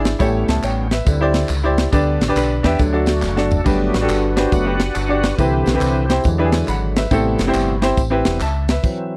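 A reedy, lightly overdriven tonewheel organ with key click, fast rotary speaker and chorus vibrato takes the solo over this jubilant, reverent uptempo gospel excerpt in G major at 139 BPM with a swung 4/4 feel, carried by a brilliant baby grand piano, a round, punchy fingered electric bass with an envelope filter, a tight, dry funk kit with bright cymbals and a high-tuned snare that plays a fill at 3.2 seconds, and distant tambourine and handclaps, while a clean, picked electric guitar recorded direct slips in briefly in the background at 2.4 seconds, all in a close 1970s-style studio sound before a stop at 8.8 seconds.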